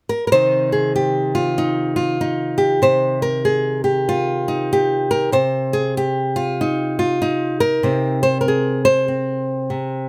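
Intimate and haunting, this short folk excerpt features a solo fingerpicked nylon-string guitar with a bright, fresh-stringed classical tone, sitting up front under close, detailed microphones and light reverb as it plays in C minor at 96 BPM with a swung 4/4 feel, tuned slightly high to A4 = 444 Hz, staying on a C minor harmony throughout its roughly 10 seconds.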